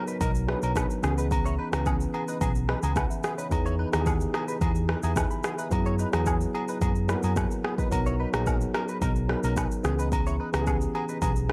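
A worn, slightly out-of-tune tine electric piano and a bright, twangy clean electric guitar riff, carried by analog chorus and delay, open this joyful, breezy afrobeats excerpt in B major at 109 BPM, moving through chords such as Bmaj7, C#m7, Emaj7 and F#9sus4. Within moments a produced, tape-warm afro-pop kit with a deep kick, rim click and shaker arrives, joined at 0.2 seconds by a dark, round, punchy hollow-body bass and a small-room layer of agogo bells, woodblock, maracas and group handclaps. The dry, gritty recording keeps the drums and electric piano up front, with the bass sitting loudest in the mix.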